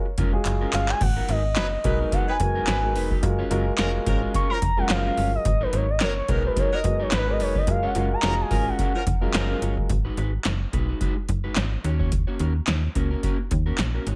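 Late-night and slick, this early-eighties boogie funk excerpt moves at 108 BPM in 4/4 with a lightly swung sixteenth-note feel, centred on G# dorian and trading F#maj9 and G#m9 chords before turning to G#m7 and D#m7 from 9.9 seconds. An electro analog drum machine sits up front with a deep kick, punchy snare, metallic hats, handclaps and crash cymbal, its tape-tinged tone carrying gated reverb and a short fill near the opening. Beside it, a slap-like FM bass with a snappy, digital attack anchors the low end. A smooth, gliding portamento lead carries a soft sine-toned solo with vibrato and chorus, while a horn section adds a present, pop-style second line with light vibrato. A grand piano with long sustain supplies the chords, and a dark, picked electric guitar at the edge of break-up plays a riff through subtle chorus. Lead, horns and piano fall away between 9.2 and 9.9 seconds, leaving guitar, bass and drums to carry the closing stretch in a lightly reverberant space.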